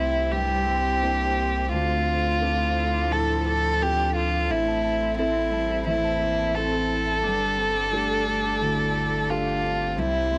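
Played rubato in 4/4, this longing, melancholic neoclassical excerpt for piano and strings puts an intimate solo violin up front, bowed sul tasto with light vibrato and an airy, soft-attacked tone, over a cello second line in the background that carries a tape echo. A dark, boxy grand piano with short sustain, a very quiet viola and a very quiet chamber string section holding sustained chords fill out the accompaniment, while a ringing, fingerpicked concert harp adds tape-echoed arpeggios and a deep, punchy sine sub bass with a pitch-drop attack anchors the low end. The harmony moves from C through Dm7 and Am to Gsus2 in a light reverb.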